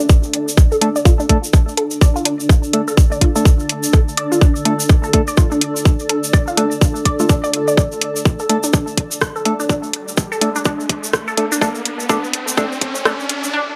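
Minimal techno with a clinical, hypnotic mood and a swung 16th-note feel, this build-up sets a tight, up-front electronic kick and a tape-warm analog drum machine's metallic hi-hats and rim clicks against a grainy tube shaker; a squelchy, resonant sawtooth blip pluck with phaser, delay and sidechain pumping carries the riff under a filter sweep, a hollow, dark organ stab with chorus and delay punctuates, a blurred, mellow granular cloud pad pumps in the background, and an electronic riser enters at 9.8 s, all in a small-room ambience.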